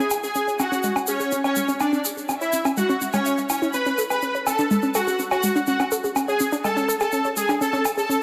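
A soft, smooth supersaw melody with tape echo opens this dark, cinematic melodic techno excerpt at 124 BPM in 4/4, joined from the start by a lush, vibrato-rich bowed violin section on a higher second line, a punchy, up-front detuned pluck playing arpeggios with a filter sweep (both the violins and the pluck set in digital delay) and a grainy, bright tube shaker, while a tape-warm electronic woodblock enters at 0.1 seconds, all inside a huge ambient reverb as the harmony moves from C#5 to B7sus2/G# at 3.7 seconds.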